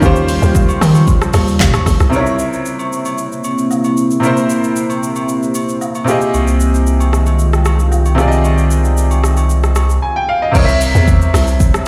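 This amapiano excerpt opens with everything at once: a bright, brilliant grand piano with a slightly worn edge sitting up front over deep house drums, a moody sawtooth pad, a hollow log drum bass and background agogo bells and woodblock. At 114 BPM in a straight 4/4, the mood is deep and soulful, moving through rich chords from Eb13 to C7b9 and then Fm9/C. The layered electronic kit is forward in the mix, with a deep kick, dark hi-hats, handclaps, rim clicks, shaker, toms and a crash cymbal. The bouncy, percussive log drum bass drops out after 2.1 seconds and returns at 10.6 seconds, while a full, sustained sub bass with an octave layer enters at 6.3 seconds and holds until 10.0. The detuned pad carries chorus, its own reverb and sidechain pumping before ending around 10.5 seconds, and the whole track sounds as if played on a big system in a bare room with a large studio reverb.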